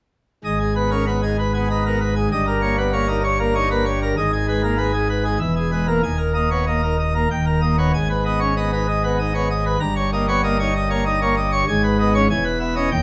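In a straight triple metre, this stormy and majestic classical organ toccata excerpt has a solo pipe organ playing from 0.4 to 13.0 seconds on a full plenum, its mixtures giving a brilliant, baroque-voiced sound placed up front. The harmony moves between the minor tonic and a dominant seventh, with a suspended dominant resolving along the way, while a wet stone room's reverb surrounds the organ.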